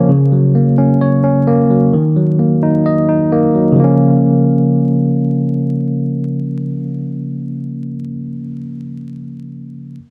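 A tine electric piano sits up front, its clean tone coloured by the sound of built-in speakers as it carries the accompaniment across the full 10 seconds of this clip from a longer hip hop piece. The mood is melancholic and eerie, set in Bb minor at 130 BPM in 4/4 with a half-time feel that makes the pulse seem slow. The piano spans Db3 to Eb5, moving from Gb to Ebm in the opening stretch before settling on Bbm at 3.8 seconds, where a second passage begins. A lush hall reverb with a 2.6-second tail gives the playing a haunting space. The production is dark and warm, with vinyl crackle adding a worn, dusty texture.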